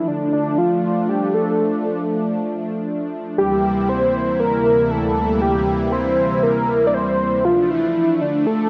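This synthwave fragment, cut from a longer piece, moves in free time in D minor with a nocturnal, cinematic mood. A thick, bold unison lead carries the melody between D4 and D5 for the full 8.7 seconds. Its detuned sawtooth layers, blended with a triangle and a sub octave, give it a fast attack, sustained notes, vibrato and a mellow edge, and a digital delay trails behind it. Underneath, a smooth analog pad holds sustained chords from D2 to E4, its detuned sawtooth tone softened by a soft attack, a moving notch and chorus. Both parts sit up front in a wet, lush hall reverb within a bright 1980s-style digital production. The harmony rests on Dm, shifts to C7/D at 3.4 seconds, and returns to Dm at 7.4 seconds.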